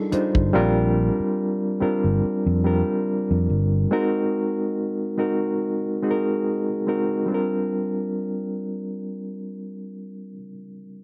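A reedy electric piano with a fast tremolo carries this short excerpt of soulful neo-soul R&B, sounding clean and up front through its built-in speakers as it moves from Cm11 to Bb6 and Ab7 at a slow 71 BPM with a light sixteenth-note swing in Bb major. A punchy, amped fingered electric bass sits alongside it until 3.8 seconds, while a damped 70s drum kit with a tight kick and hi-hat is heard only briefly at the very start. The dry, close 1970s-style studio sound keeps the mood warm as the piano continues alone to 11.0 seconds.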